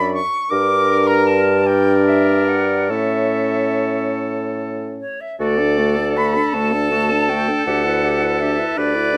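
Classical slow romantic movement for wind quintet in 6/8 with rubato and a tender mood, in which a pure, distant silver flute with vibrato carries the melody above a clear oboe second line, a bright, smooth-topped clarinet set in the background, a warm, close-miked French horn filling out the accompaniment and a mellow bassoon bass up front, all captured with close, detailed microphones and light reverb, as this fragment of a longer piece moves into a new section at 5.4 seconds.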